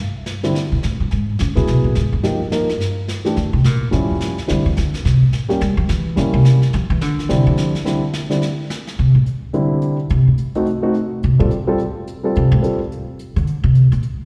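Warm and playful, this fragment of a swinging 214 BPM jazz piano trio in 4/4 puts a woody, thumpy pizzicato upright bass up front for a solo across the whole passage, while an intimate grand piano with audible action noise adds melody and an airy brushed kit with a medium-tuned snare and hi-hat sits low in the mix, both piano and drums carrying a slapback echo, all captured as a live gig heard through the venue's PA in a recital hall's reverb.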